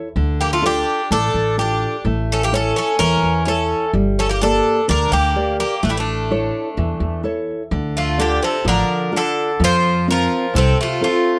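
A fingerpicked classical nylon-string guitar with fresh strings opens this short, tense cut from a longer Greek folk piece for bouzouki band, joined almost at once by a thumpy, woody upright bass played pizzicato on gut strings and placed up front. From 0.4 s two picked bouzoukis enter: a bright, metallic lead carries the melody up front, while a second bouzouki with its own double, partly octave-doubled strings plays a lower line beneath it. Moving at 127 BPM in a straight 4/4, the intense music cycles through Dm, A and Gm before settling into D minor at 7.7 s and turning to F, all captured with close, detailed microphones and light reverb.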